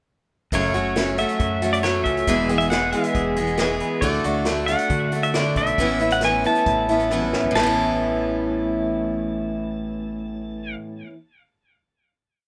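A dry, rough home-demo mix frames this short, warm and nostalgic folk rock and heartland rock piece in A major at 137 BPM, with a bright, full-bodied jumbo acoustic guitar strumming open chords up front over a round, punchy fingered electric bass and a distant, roomy acoustic kit played with bundle sticks in a pop groove under dark cymbals. Further back, a slightly broken-up, lo-fi electric guitar picks arpeggios through a small old amp with vibrato, while a clean, twangy pedal steel carries hook phrases up high with volume swells, slide and digital delay. The drums end the verse with a fill at 7.1 seconds and drop out, and the other parts ring out on a final chord until about 11 seconds.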